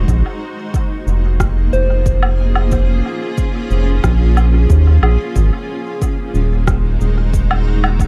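Meditative and hazy, this ambient dub excerpt in Bb minor moves at 91 BPM in a straight 4/4, with a granular cloud pad holding blurred, evolving sustained chords from Bbm7 to Ab7 at 5.4 seconds, while a soft synth bell traces pure, gentle FM arpeggios in the background through chorus, phaser and tape echo. A round analog bass sits up front with a mellow, tube-saturated weight, and at 0.1 seconds a deep electronic kick drum enters together with electronic cabasa, rim click and woodblock that trail off into dub echo. The production is dark and warm, wrapped in a digital ambience.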